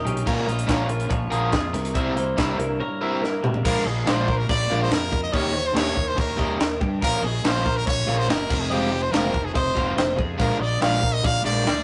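Restless and intricate, this math rock and midwest emo excerpt runs at 142 BPM in a straight 4/4, cut from a longer piece. A crisp fusion drum kit sits up front with a high-tuned snare, tight kick and a saturated, gritty, pumping small-room sound, and a drum fill at 3.2 seconds leads into a new section. Beneath it a fuzz fingered electric bass growls low, while an overdriven, double-tracked semi-hollow guitar carries the riff and a bright, compressed twelve-string electric guitar spins arpeggios in the background. A clean, twangy electric guitar adds accompaniment until 5.1 seconds. From 3.7 seconds a brilliant, close-miked trumpet takes the solo melody, forceful and punchy, with scooped notes and light vibrato in a pop style. The harmony moves through jazzy sevenths such as Bbm7, Eb7 and Fm7, and the whole track has the rough feel of a rehearsal room, with a moderate stone-room reverb and a dull top end.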